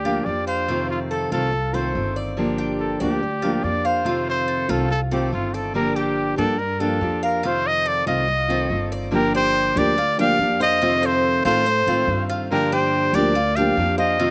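A straight 4/4 Latin groove at 142 BPM drives this nostalgic, danceable passage in G minor, cut from a longer piece and swaying between Gm7 and F7 throughout. Up front, a trumpet carries the melody in a pop-style solo, its smooth top shaded with vibrato and scooped notes. Beside it, a fingerpicked steel-string acoustic guitar with fresh strings and audible finger squeak supplies the accompaniment, while a Cuban tres adds metallic arpeggios from its doubled, partly octave-doubled strings, both touched with slapback echo. Underneath, a pizzicato upright bass gives a woody, growly, thumpy foundation. At 9.1 seconds a flamenco guitar joins in the background with a fingerpicked second line, also carrying slapback echo, and the whole recording is dry, captured outdoors with little reverb.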